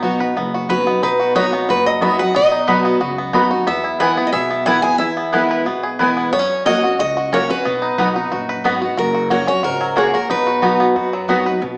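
Virtuosic and driving, this bluegrass excerpt in B major races along at 181 BPM in straight 4/4, with a twangy, fingerpicked banjo and an up-front, bright dreadnought guitar sharing the melody over a second full-bodied picked guitar's accompaniment and a thumpy, dark upright bass in the background, while a woody double-strung mandolin adds stabs from 1.4 seconds, all heard through a large studio reverb and the warbly pitch drift of worn cassette tape on a small speaker, moving from B through E and F# back to B.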